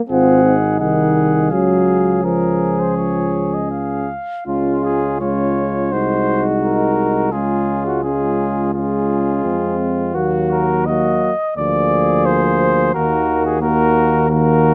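Moving at a flexible, rubato 84 BPM in 4/4 with uneven beats, this solemn, heroic classical brass quintet excerpt in Db major sets an up-front, mellow cornet melody with light vibrato and soft attack over a punchy flugelhorn second line, smooth-topped French horn and trombone accompaniment, and a present tuba bass, all sounding together from 0.1 to 14.7 seconds in light reverb as the harmony moves from Ab7 and Db toward Ebm and Bb7/D.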